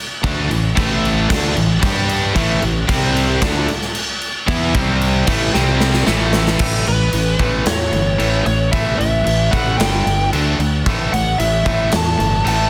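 A big acoustic rock drum kit sits up front in this swaggering, powerful hard rock excerpt at 113 BPM in 4/4. Its punchy kick and medium-tuned snare are softly clipped and sit in a bright stone room, with crash cymbal on top and a drum fill closing the first section from 5.5 seconds. Beneath it, a round, fuzzy fingered electric bass with overdrive holds the low end, while a crunchy overdriven guitar picks the main riff throughout. A double-tracked high-gain distorted guitar thickens that riff in the background, joined by a further overdriven guitar from 2.4 seconds, and both stop at 6.6 seconds as the second section begins. Shortly after, a biting lead guitar takes the melody, its overdriven tone trailed by digital delay, over chords that centre on A5 and pass through G5, C5 and D5, all in a dense, heavily limited mix with light reverb.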